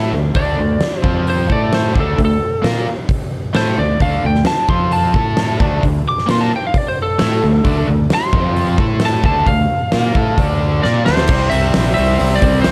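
Aggressive and driving, this hard rock cut opens with a double-tracked, overdriven electric guitar riff over a growly fuzz bass, joined at 0.3 seconds by a huge arena drum kit with a punchy kick, fat snare and bright cymbals. A slightly broken-up, twangy lead guitar with tape echo enters at 0.4 seconds and solos until 11.3 seconds, when a drum fill carries the band into a new section as the harmony moves from power chords through D minor to C. The drums and riff guitar sit up front, with light small-room reverb around the band.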